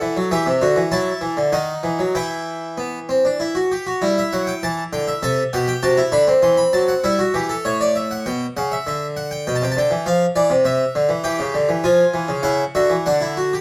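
Driving yet contemplative, this baroque-style three-part fugue for solo harpsichord moves at 99 BPM in a straight 3/4, centred on E minor. The harpsichord is a full, French-style instrument with two sets of strings, its plucked tone placed up front and caught by close, detailed microphones under a light reverb. It plays across a range from A2 to C6 for the whole passage, which is cut from a longer piece and lasts about 13.6 seconds. The opening material returns at 7.6 seconds after a contrasting middle stretch that begins at 4.0 seconds. The harmony wanders colourfully, passing through chords such as D#m, Am/C, A7 and G7/B before closing on C#, C#madd11 and finally D.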